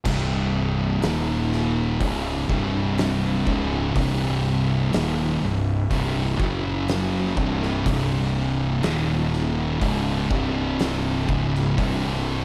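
Two dark, distorted fuzz guitars open the excerpt together at 61 BPM in C minor, one up front and one in the background, grinding out a heavy, sludgy stoner and doom metal riff over power chords shifting from C5 through Eb5 and an F#5, joined at 0.1 seconds by a growly overdriven fingered bass and an oversized low-tuned acoustic kit with a fat snare, punchy kick and dark cymbals, all set in a light small-room ambience.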